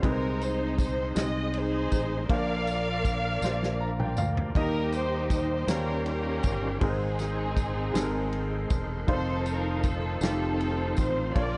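Through a worn, warbling cassette haze, this reverent, soulful slow gospel excerpt in 6/8 sets a lush, up-front string section carrying the melody over clear, intimate baby grand piano, a gritty overdriven tonewheel organ with slow rotary speaker holding chords in the background, a round fingered electric bass, a punchy small-room country drum kit and a jingly tambourine, with drums and piano sharing a fill at 3.4 seconds.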